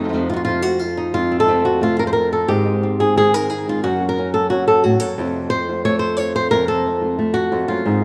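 Flamenco in an intense, mournful mood, this short cut from a longer piece moves at a brisk clip in a straight four. Two flamenco guitars play throughout its 8 seconds. The lead guitar carries the melody up front, fingerpicked with a bright, fresh-stringed acoustic tone that ranges from the low register up to a high Db5. Behind it, a second guitar supplies thumb-plucked stabs with a darker acoustic timbre, sitting further back in the mix. The harmony shifts from F to Ab, then to Gb, before returning to F at 5.2 seconds, and the whole is bathed in a wet echo-chamber reverb with a two-second tail over the feel of a small room.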